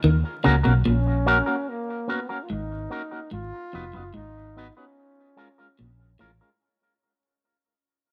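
Meditative and laid-back, this short reggae excerpt moves at 73 BPM in a straight 4/4 feel in Eb minor, cut from a longer piece and fading out across its whole length. A clean, picked electric guitar carries the low riff from the start, while a vintage muted fingered electric bass sits up front with a dark, round, foam-muted tone. An electric guitar through an envelope filter enters at 0.4 seconds with bright, twangy accompaniment, colored by tube saturation and dub echo. A smooth trombone with vibrato takes the melody from 0.9 seconds in a soloistic pop style, sitting lower in the mix and also trailing dub echo. The chords move from Ebm7 to Abm7 and then Bbm7, and the rough home demo mix has little reverb and a layer of vinyl crackle that lends it a dusty, intimate character.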